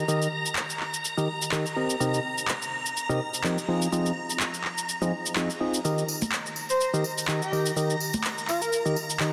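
Uplifting, feel-good piano house excerpt with a swung 16th-note groove: a hollow, dark organ stab riff with chorus and delay sits up front over shimmering vintage string-machine violins holding sustained chords, while electronic shaker and handclaps with an analog, tape-tinged character drive the beat. Close, dry tambourine and hard-handed congas join at 5.8 seconds, and an airy, dreamy lead with vibrato, chorus and delay carries a soft melody from 6.7 to 8.8 seconds. A lush hall reverb and a dense, heavily limited modern master frame the chords as they move from Eb through Cm7 and Fm7 and back to Eb.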